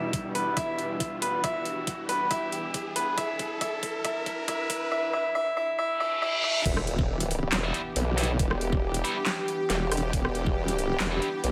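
Set in a moderate digital room reverb, this menacing, heavy half-time wobble dubstep excerpt opens with a bright concert grand piano melody trailing dub echo over a lush supersaw pad and a blurred granular cloud pad in the background, both pumping with sidechain, while a riser, reverse cymbal and impact, a dubstep drum kit with a huge snare and metallic hats, and an overdriven, knocking electronic kick build toward the drop at 6.7 seconds, where an up-front, detuned formant-sweep wobble bass with chorus enters and a tight distorted guitar adds double-tracked stabs from 7.6 seconds.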